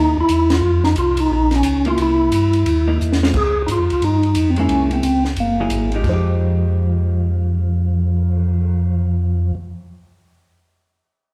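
A percussive, flute-like tonewheel organ carries the melody over round, mellow organ bass and a dark, picked hollow-body electric guitar, both organs turning through a slow rotary speaker, as a compact cocktail drum kit with a punchy kick and high-tuned snare joins at 0.3 s in this smoky, late-night soul jazz organ trio excerpt, swinging at 177 BPM in F minor with a band accent at 0.5 s, a drum fill at 3.0 s and a wet, large studio reverb that places the players further back in the room.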